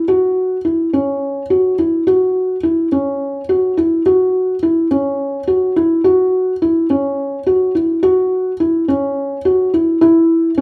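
Restless and hypnotic, this brief contemporary instrumental fragment, cut from a longer piece, moves in an uneven 7/8 metre with a straight feel. A felt-muted upright piano plays alone and up front throughout its 10.6 seconds, its thick felt giving a soft, dark, vintage tone as it stays within a narrow range from C#4 to F#4. A moderate recital hall reverb lends the intimate sound a gentle sense of space.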